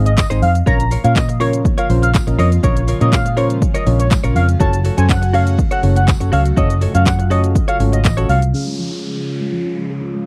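Soft, mellow electric-piano-like synth keys and a dark, foam-muted vintage fingered bass open this summery, euphoric dance-pop excerpt at 122 BPM in Db major, joined almost at once by a punchy, up-front deep house kit of kick, hi-hat, handclaps and shaker, a jingly tambourine in the background, a clean, scooped direct-recorded guitar riff, and a bold, retro octave-doubled lead with vibrato and tape echo, while an airy, breathy pad with phaser drifts in at 1.0 seconds, the keys, bass, lead and pad sidechain-pumping in a dry, close 1970s-style studio sound until a filter sweep at 8.5 seconds brings a gentle pluck arpeggio and an electronic downlifter.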